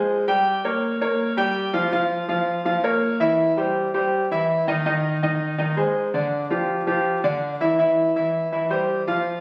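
A clear concert grand piano carries this short latin fragment alone, cut from a longer piece and running just 9.4 seconds at a brisk 164 BPM in straight 4/4. The mood is warm and sultry, with the piano sitting up front and ringing open, its deep bass anchoring a range that spans D3 to G5. The harmony moves through Gdim, Bbm, C, Ab and G5 before landing back on C at 7.8 seconds, lending a restless, shadowy colour to the brief passage. The instrument is tuned slightly low, to A4 = 435 Hz. A large studio reverb bathes the sound in a wet, lingering tail, and the recording was captured on a phone in the room with added compression.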